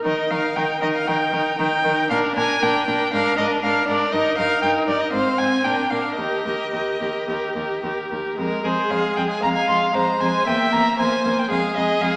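A cheerful, spirited string quartet movement in the classical style opens in Eb major at a quick, rubato 108-121 BPM, with a clear, lightly vibrato first violin singing the melody up front over a focused second violin line, an expressive, distant viola accompaniment marked by portamento, and a rich cello bass, all heard through a small-speaker sound in a reverberant recital hall before the music turns to F minor at 8.4 s in this short cut from a longer piece.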